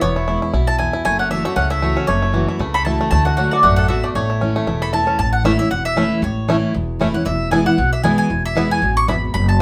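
Rustic and virtuosic, this brief bluegrass excerpt races along at 232 BPM in 4/4 with a light swing on the eighth notes, set in A major. The bright, double-strung mandolin carries the melody up front, picked high in its register, while a full-bodied jumbo steel-string acoustic guitar, also up front, supplies picked accompaniment with audible finger squeak. A twangy bluegrass banjo played with fingerpicks adds percussive arpeggios a little further back, dropping out at 9.1 s just before the others finish. Underneath, a woody, thumpy upright bass plucked on steel strings anchors the low end. The harmony moves from E through F#m7 and D to A before returning to E, with the phrase repeating from 5.2 seconds, all within a moderate studio reverb.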